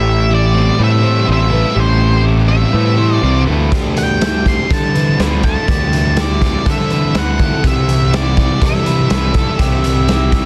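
A dense, heavily limited modern master packs this wistful, hazy shoegaze and dream pop fragment into a tight, dry space, cut from a longer rock piece in a straight 4/4. A dark octave-fuzz lead guitar carries the melody between C5 and C6, its distortion trailed by digital delay, while a lo-fi, slightly broken-up guitar through a small old amp picks arpeggios in the background with subtle chorus and its own delay. Beneath them, a hollow-bodied overdriven semi-hollow guitar smeared with reverse reverb and a thick, distorted fuzz guitar touched with subtle chorus both play riffs from A2 to A4, tucked behind the lead. A round, overdriven fuzz bass sits up front, and at 3.7 s a raw garage drum kit arrives with a punchy kick, medium-tuned snare and hi-hat, heard in a bright stone room with a rolled-off top. The harmony moves from Am7 to D9sus4 and then C6, holding a single hazy section throughout.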